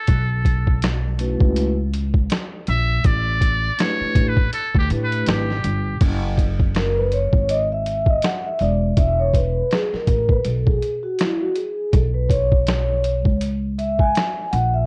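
Cool, smooth jazz-hop excerpt in a small room with a worn, warbling tape sheen, where a buzzy, thin metal-muted trumpet takes a vibrato-laced solo with scooped notes and a touch of analog delay until 6.0 seconds, then a mellow, ringing soft-mallet vibraphone with slow motor vibrato carries the lead, all over a woody pizzicato upright bass with transformer saturation and a gritty, pitched-down boom bap sampler kit with a thumpy kick, medium-tuned snare, hi-hat and crash.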